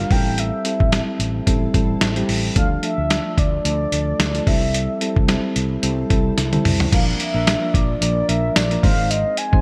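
1980s-style pop at 110 BPM with a light 16th-note swing, glossy and uplifting, where a mellow horn-like synth lead with vibrato and chorus carries the melody over soft, round electric-piano-like synth keys, a growly, punchy fretless electric bass and an up-front, muffled, pitched-down sampler-style drum kit with a thumpy kick and tambourine, moving from Am7 through Dm and C6 before a drum fill at 6.4 seconds leads into a Bb-to-Ab passage, all set in a lush hall reverb with bright digital polish.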